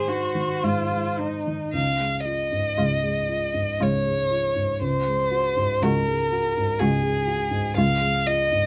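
A rich, expressive violin sings the melody up front with vibrato and portamento in this serene, slow romantic movement for piano quartet, cut from a longer piece and unfolding in a flexible, rubato three-four. A dark, mellow baby grand piano sits close and intimate, with audible action noise and short sustain, while a distant viola adds warm accompaniment with its own vibrato and portamento. A focused cello holds a second line in the background, all in light reverb over a gentle progression that settles on Db at 7.8 seconds.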